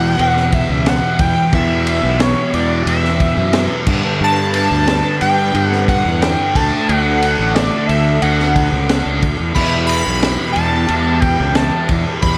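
This dark, trippy psychedelic rock excerpt in E minor opens with a shimmering, nasal pulse-width lead carrying the melody over a bowed string section holding soft, hushed chords in the background, a double-tracked fuzz guitar riff run through a phaser, and an overdriven fuzz bass sitting up front. At 0.2 seconds a crunchy, gritty breakbeat kit joins with a punchy kick, high-tuned snare and dark cymbals, driving a straight 90 BPM groove in a small room. The chords move from Emadd9 through G and D back to Em, with the lead's chorus and analog delay adding a retro sheen.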